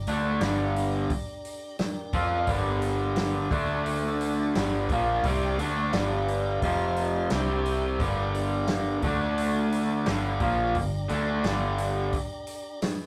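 A straight 4/4 groove at 87 BPM sets a smoky, gritty blues rock and southern rock feel in G minor, in a short passage cut from a longer piece. The vintage acoustic drum kit plays hi-hat, kick and snare with a medium-tuned snare, a tight kick and a rolled-off top, while the foam-muted fingered electric bass sits low, dark, round and punchy, ending at 12.1 seconds. Up front, a raw garage guitar drives the riff with a bright, overdriven, double-tracked tone, picked from 0.1 to 12.1 seconds. In the background, a tonewheel organ holds sustained chords through a slow rotary speaker with light overdrive, a scooped, piping tone, vibrato and audible key click, lasting to 13.1 seconds. The chords move from Gm through D5, F5 and C5 and back to Gm, captured as a rough rehearsal-room recording with tube saturation and a moderate small-room reverb.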